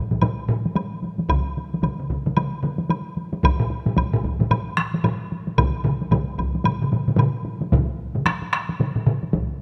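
A driving 4/4 pulse at 112 BPM with a 60% swing on the sixteenths propels this powerful Japanese traditional taiko drum ensemble excerpt, as solo taiko drums struck with heavy sticks sit up front in a small-room sound alongside a close, heavy-stick taiko ensemble and a woody, dry woodblock. At 1.3 seconds two more taiko ensembles join, one hit with hard sticks and placed up front, the other compressed and saturated in the background, before the piece shifts into a new section at 7.7 seconds. Close, detailed microphones capture the drums within a moderate concert-hall reverb.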